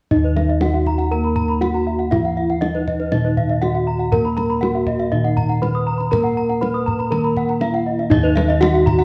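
Balinese gamelan with a hypnotic, brilliant mood, cut from a longer piece: a bronze metallophone carries the melody while a lower, mellow metallophone struck with padded disc mallets gives soft accompaniment. Two higher metallophones played with horn mallets spin bright arpeggios with the shimmering beats of paired tuning, the second entering at 0.2 seconds, as round, mellow bossed gongs sit up front on the bass and a deep, saturated kendang drives the percussion with hard hands. The ensemble rings in a moderate recital hall, coloured by worn, warbling cassette tape with pitch drift.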